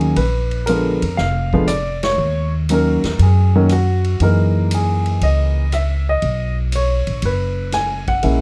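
Cool and late-night, this short excerpt from a longer piece is a jazz piano trio swinging at 119 BPM in 4/4, with a firm swing on the eighth notes. A baby grand piano carries the melody up front, its tone present with long sustain, ranging from D3 to G#5 across the whole 8.4 seconds. Beneath it, a pizzicato upright bass on steel strings sounds woody and thumpy, also placed up front and playing throughout. A big-band style drum kit fills out the groove with hi-hat, ride cymbal, rim click, a medium-tuned snare and a punchy kick, heard as a natural acoustic kit in a big room but sitting lower in the mix. The band hits a shared accent at 1.9 seconds as the harmony moves from A#7b9 through D#m7 and F#13 to B5. The production is dark and warm with little reverb.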